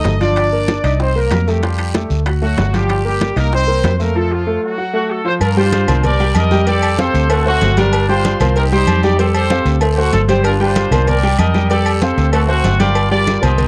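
A dry, close 1970s-style studio sound with small room ambience frames this driving, danceable salsa excerpt in G minor at 191 BPM, built over a Gm7, Cm7, Fadd9 and D progression. Up front, a dark, foam-muted vintage fingered electric bass anchors the groove while a clear horn section with light vibrato carries the melody until 5.2 seconds, into a break that begins at 4.2 seconds, and a bright, punchy vintage horn section takes the melody from 4.9 seconds. A polished baby grand piano accompanies throughout, with ringing congas, metal-shell timbales and agogo bells, raspy guiro, round low-tuned bongos and cowbell, and very quiet woody claves filling the background.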